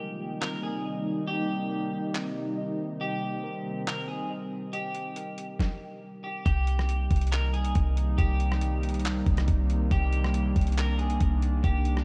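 A warbling, tape-like pad carries this spacious, ethereal stretch of atmospheric cloud-rap. Its detuned sawtooth-and-triangle chords swell in slowly and hang on a Cm7 with long release, chorus, built-in reverb and a sidechain pump. From 0.4 seconds, a compressed, pitched-down, lo-fi sampler-style drum kit sits up front at 139 BPM in a half-time 4/4 feel. It brings a thumpy kick, a medium-tuned snare, handclaps, hi-hat and rim clicks, all muffled and roughened by overdrive. Muted, felt-like synth keys play soft arpeggios in the background with chorus, filtering and diffuse delay until 6.5 seconds, when a deep, boomy sine 808-style bass arrives on C to anchor the second half. Throughout, a clean, picked electric guitar traces a gentle melody through analog chorus, a low-pass filter and hazy delay. The whole piece is in C minor, tuned to A4 = 438 Hz, and drenched in lush hall reverb for a dreamy, nostalgic haze.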